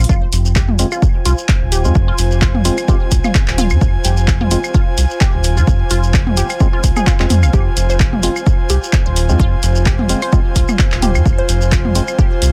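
A swung, hypnotic minimal techno groove in four rides a punchy, up-front kick and a tape-warm analog drum machine of handclaps and hi-hat, with grainy shekere close and dry and echoing electronic toms and claves adding quirky detail. A round, deep analog bass pumps against the kick on a single minor chord, while a squelchy, resonant blip pluck riff sits low in the mix with phaser and tape echo. A breathy pad with chorus swells in at 0.4 seconds and hollow organ stabs with echo join at 0.8 seconds, all under a dense, heavily limited master in a light reverb, in a drop section cut from a longer track.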